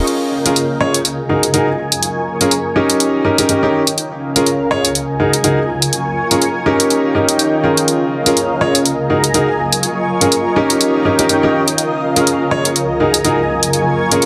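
Piano house in a joyful, euphoric mood, with a woody, intimate upright piano riff carrying audible action noise and digital delay up front beside a tape-warm electronic hi-hat, while a silky, chorused analog string pad with vintage sampler grit and a filter sweep holds sustained chords alongside a blurred, detuned granular cloud pad, all in a dense, heavily limited mix with plate reverb.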